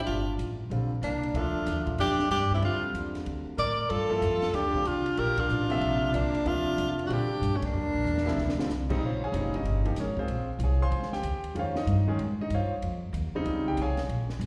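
A swung 4/4 pulse at 188 BPM drives this searching, intense modal jazz excerpt. It is carried by pizzicato upright bass with a woody, thumpy tone and a compact cocktail drum kit whose dark, smooth sound pairs a punchy kick with a high-tuned snare, crash, hi-hat and ride. Over opening harmony that moves between Gm9 and Bb, a breathy tenor saxophone takes the melody up front with vibrato, subtone and scooped notes, while a whispered, close-miked alto saxophone with a soft attack plays a second line beneath it. A clear grand piano supplies accompaniment with audible action noise, and the band hits accents before a drum fill at 8.1 s. Both saxophones stop just before 9.0 s, where the harmony turns to Bbm9 in Bb dorian and piano, bass and drums carry on as a trio. The sound is that of a live gig heard through the venue's PA, with light recital hall reverb and slapback echo on the horns, piano and drums.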